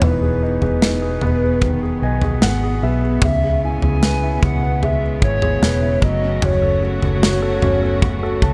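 A hollow, woody clarinet-like synth lead carries the melody through chorus and phaser, its vibrato giving this tender, heartfelt pop ballad fragment a mellow voice over a drift from Emaj7 to C#m7 and F#m. Beneath it, an intimate concert grand piano with audible action noise and long sustain accompanies and adds fills at 1.6 and 8.0 seconds, while a lush bowed string section holds smooth sustained chords. A dark, round, foam-muted fingered electric bass and an up-front acoustic drum kit with tight kick, medium-tuned snare and toms ground the straight pulse in a small room.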